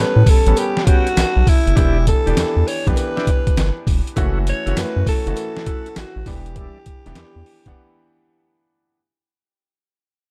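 New jack swing R&B excerpt at 100 BPM in E dorian, punchy and slick, with a growling, raspy alto saxophone melody over a clear grand piano with tube saturation and audible action noise, a round, deep analog bass and a gritty, pitched-down sampler-style drum kit with thumpy kick and tambourine, a very quiet metallic cowbell, and background tonewheel organ stabs through slow rotary speaker and digital delay, all fading out across a dark, small-room production moving from A9 through Em7 and F#m7 before a break at 7.8 seconds.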